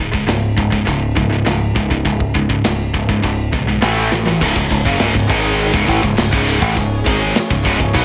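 A scooped, high-gain guitar drives this aggressive, relentless heavy metal excerpt from the first moment, joined by a background distorted guitar with a bright, overdriven riff and a growling picked bass that sits up front with its own overdrive. A tight metal drum kit enters at 0.1 seconds, its medium-tuned snare and tight kick placed forward in a studio room with a rolled-off top, cycling through crash and ride cymbals and closing the opening stretch with a fill at 4.1 seconds. The harmony moves from C#5 to A5 power chords before settling on C#m. At 4.4 seconds the background guitar stops, and a biting, double-tracked overdriven guitar takes over the riff while a studio string section adds sustained, bowed chords behind the band, its gut-string, reedy tone and smooth top lending a period flavour. Light reverb gives the straight 4/4 groove a touch of space, and the fragment breaks off at 8.0 seconds.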